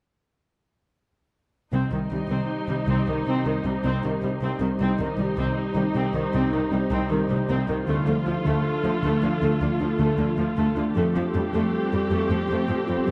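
A dark production with moderate scoring-stage reverb and lossy compression artefacts frames this tense, brooding cinematic piece in C dorian at 78 BPM: a lush, expressive viola section with vibrato and portamento sits up front over a rich, smooth cello section bass, while a ringing harp-like synth pluck with chorus and delay plays arpeggios, a glassy FM pad with ensemble chorus brings ethereal sustained chords from 2.2 seconds, and an electronic swell appears in the background at 11.9 seconds as the harmony moves from Cm through Dm to Fadd9.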